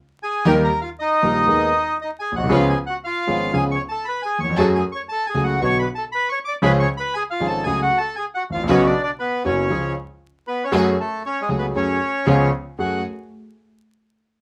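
A sultry, dramatic tango in a flexible rubato 4/4, cut from a longer piece, opening on a long section that gives way to a brief new one at 12.8 seconds. A reedy, airy bandoneon carries the melody up front from 0.2 seconds, reaching high into its range. Also up front, a concert grand piano supplies an intimate, polished accompaniment with deep bass and audible action noise. In the background, a chamber string section adds bowed stabs with light vibrato and a gut-string, period-style tone. Minor chords with added ninths and dominant sevenths give the harmony its brooding pull, and a moderate club reverb and a layer of vinyl crackle lend the sound an aged, smoky character.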